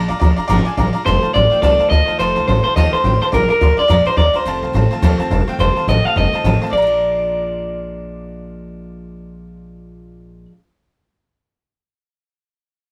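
Rollicking and rowdy, this rockabilly cut from a longer piece charges along at 212 BPM in Bb major with a swung feel, moving between Bb7 and F7. A woody, thumpy upright bass with gut strings sits up front beside a twangy, slightly broken-up electric guitar through a small old amp, which takes the melody from 1.1 seconds. Underneath, a full-bodied dreadnought steel-string acoustic with fresh strings and a jangly, metallic tack piano fill out the accompaniment, all captured as a band playing live in one room with moderate studio reverb.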